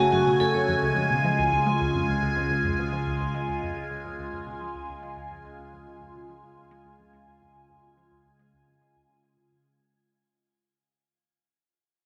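A swirling, nasal phased analog pad sits up front in chorus and shimmer reverb, holding sustained F#madd9 and C# chords in this mysterious, cosmic ambient piece at 107 BPM, while a bright, metallic vibraphone with hard mallets rings out arpeggios only until 0.7 s, a tight, driving sequenced sawtooth synth riff with a filter pluck and tape echo plays in the background, and a fat, saturated analog bass sits low beneath it as the cut fades out through a wet plate reverb.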